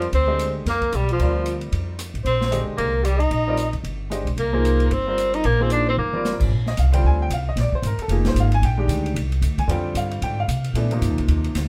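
A clear, lightly vibrato tenor saxophone carries the melody up front in this fast modal jazz passage, swinging at 226 BPM in Bb mixolydian with an open, hypnotic mood. A breathy, mellow alto saxophone traces a very quiet second line above it with scooped notes and a subtone, and both horns drop out at 6.4 seconds. A bright, polished upright piano comps throughout, while the woody pizzicato upright bass sits up front and anchors the harmony as it moves between Bb9 and Cm7. The open drum kit, with dark cymbals and a boomy kick in a small room, plays a fill at 6.0 seconds that leads into the second half, where piano, bass and drums carry on alone. A light reverb frames this brief section, which is cut from a longer piece.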